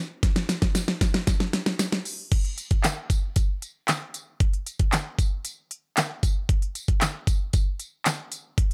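A drum fill from a layered, electronic pop kit opens this summery, euphoric pop clip at 115 BPM in a straight 4/4, building up from 0.2 s, while a jingly acoustic tambourine slips in behind it from 0.5 s. At 2.3 s the music drops into its main groove, with the up-front kit of kick, snare, hi-hat, crash cymbal and handclaps driven by a knocking kick, a fat snare and crisp hats, and the small-room tambourine sitting in the background. The sound is dry and gritty, set in a digital ambience, with a tape-warm tint on the drums.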